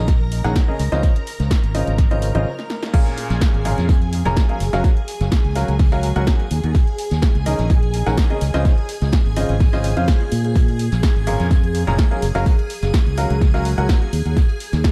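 Shimmering vintage string-machine violins, a bright, woody upright piano riff with tape echo and a round, dark fingered electric bass open this bittersweet, soulful piano house excerpt. At 0.1 seconds a punchy, up-front electronic kick, an overdriven analog drum machine with crash, hi-hat and snare, and a very quiet, distant brush kit join them. A short break and drum fill then lead into the drop at 2.9 seconds, while sidechain pumping on the strings, piano and bass drives an echo-heavy mix throughout.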